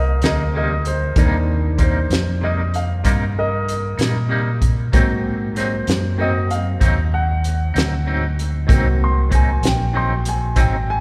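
Smoky and mournful, this brief slow blues in 12/8 at 64 BPM is cut from a longer piece, tuned to A4 = 444 Hz, and moves from Cm7 to Ab7 at 4.9 seconds. A clear, woody upright piano takes the solo throughout, intimate and polished, with audible action noise and long sustain, over a dark, round fingered electric bass sitting up front. A clean, scooped electric guitar with tremolo and a tight soul drum kit with a fat snare, rolled-off top and pumping room feel sit inside a wet church reverb.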